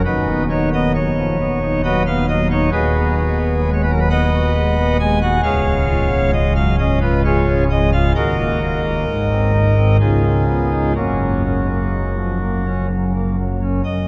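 Serene and majestic, this chorale-style classical passage for pipe organ is cut from a longer piece and moves at a slow, flexible 61-68 BPM in 3/4, with a rubato feel. A single pipe organ voiced on the cornet plays as a solo from 0.0 to 14.1 seconds, its nasal, romantic tone sitting up front and spanning a broad range from the deep bass to the upper treble. The harmony stays in F# major, opening on B over D# and passing through G#m7, C# and D#m before a G# and a rich C#9 lead to a settled close on F#. The instrument is tuned slightly low, with A4 at 436 Hz. A cathedral's reverb, with a long 7.1-second tail, surrounds the organ and lets each chord hang in a vast, resonant space.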